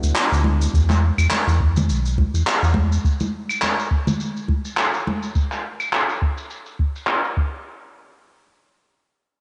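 This sunset chillout excerpt moves at a relaxed 104 BPM in 4/4 with a light 16th-note swing, setting a smooth, wistful mood. A gritty, overdriven tine electric piano, barky as if through a combo amp, sits in the background with cassette tape and analog delay, sounding a D6 chord before an E5 and dropping out by 0.8 seconds. A round, dark analog bass with tube saturation sits up front, its sustained, fast-attack tone blending sawtooth, sine and triangle, and it carries the low end until 3.0 seconds, after which the harmony drops away. Shaker, handclaps and claves with a brushed, natural small-room feel are filtered and tape-softened. Warm acoustic congas come in at 0.4 seconds, followed by a deep electronic kick drum at 0.7 seconds. A lush hall reverb and the muffled top of a home cassette recording give the sound a hazy, intimate glow.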